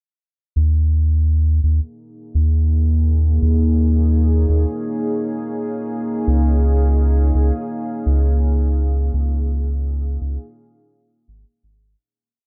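A round, up-front analog bass drives this deep, meditative ambient dub piece at 84 BPM with a light swing, its dark dub-style line starting at 0.6 seconds before a moody, detuned pad with chorus and built-in reverb joins at 2.3 seconds to hold slowly shifting sustained chords, all in a lightly reverberant space that fades out from 8.2 seconds.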